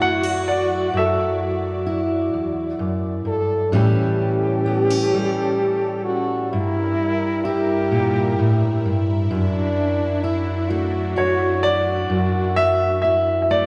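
A fingerpicked steel-string acoustic guitar with fresh strings and an audible finger squeak opens this tender, heartfelt folk-pop ballad in 6/8, joined from the start by a classical-style French horn singing a smooth, vibrato-tinged second line and a lush, detuned sawtooth pad holding thick, chorused chords softly beneath. A polished, present grand piano carries the melody up front until 3.3 seconds and returns at 11.2 seconds, while the harmony moves from Dadd9/F# through A7 and Gm6 back to Dadd9/F#. The recording sits in the wet, spacious reverb of a church or concert hall, and this passage is cut from a longer piece.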